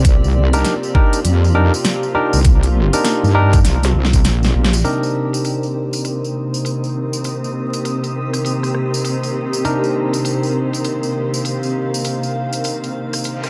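This swung glitch hop excerpt in C minor at 100 BPM opens on a Cm9 chord with dark, woody strings pumping under a low-pass filter, a heavy, saturated wobble bass and a knocking electronic kick that both drop out during a drum fill running from 3.6 to 4.8 seconds, while a pop kit's fat snare and crisp hats, a jingly tambourine, a cloudy granular pad and a barky, delayed tine electric piano carry a playful swagger over vinyl crackle as the strings undergo a filter sweep and a reverse cymbal enters at 13.3 seconds.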